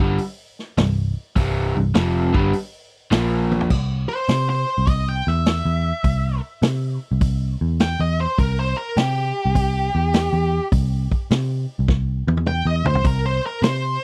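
Blues rock in a power-trio mould with a southern rock streak, this raunchy, gritty excerpt swings at a relaxed mid-tempo in 4/4. It opens with a bright, double-tracked overdriven electric guitar riff over power chords, backed by a dark, round, foam-muted picked bass and a vintage acoustic drum kit with a punchy kick, medium-tuned snare and dark, rolled-off cymbals. A drum fill at 3.4 seconds leads out of the riff, which stops at 3.7 seconds, and an octave-fuzz lead guitar takes over with a distorted solo from 4.1 seconds to the end, its tone warm and fuzzy. Bass and drums carry on beneath the solo, with another drum fill from 11.9 to 13.0 seconds. The sound is dry and close, a 1970s-style studio recording with every part up front.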